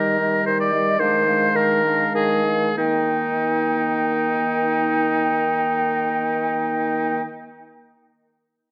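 Heard through worn, warbling cassette tape with drifting pitch and a moderate stage reverb, this dramatic, urgent excerpt of a quick classical-period wind quintet movement in 3/4 and Eb major moves at a rubato 94-115 BPM, slowing over its first 2.8 seconds, as an airy, distant concert flute with vibrato carries the melody above an up-front, clear oboe on the second line, a dark, smooth-topped French horn and a very quiet, roomy clarinet in accompaniment, and a mellow bassoon holding the bass.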